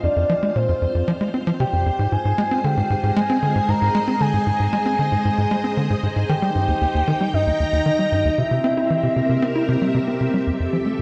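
Ambient, sequencer-driven space music at 115 BPM in a straight 4/4, expansive and mysterious, cut from a longer piece: a tight, punchy sawtooth sequencer bass with a plucked filter drives the riff under chorus and delay, a lush vintage string machine fades in over its sustained chords from 0.0 to 10.5 seconds, and a soft, round, octave-layered synth lead carries a dark melody with chorus, tremolo and delay until 9.9 seconds, all set in a wet plate reverb as the harmony moves from Fsus2 through Ab, Eb and C7 to Fmaj7.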